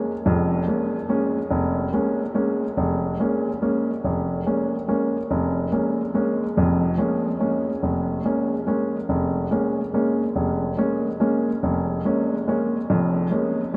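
Jazz in a swung triple metre, this brief piece carries an intense, spiritual mood from its opening moment. A baby grand piano plays alone for the whole 13.8 seconds, keeping to its low and middle register and dwelling on a single minor seventh chord. The instrument sounds intimate, natural and close up front, with short sustain and the soft clatter of its action clearly audible. Analog delay adds echoes to the piano, and a huge ambient reverb with a 7.7-second decay soaks the mix in a dreamy haze. The passage is cut from a longer performance.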